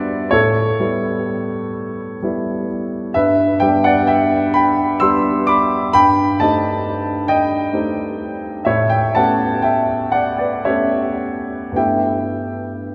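A warm, polished grand piano plays alone and up front through this dreamy, hazy impressionist classical excerpt, moving in a slow, rubato 6/8 at about 35-45 BPM in dotted quarters and tuned to A4 = 442 Hz, its chords passing from A9 through G6 and Cm6/G back to A9 before arriving on G69 at 11.8 s, the sound bathed in a long, wet church reverb and touched by lossy compression artefacts.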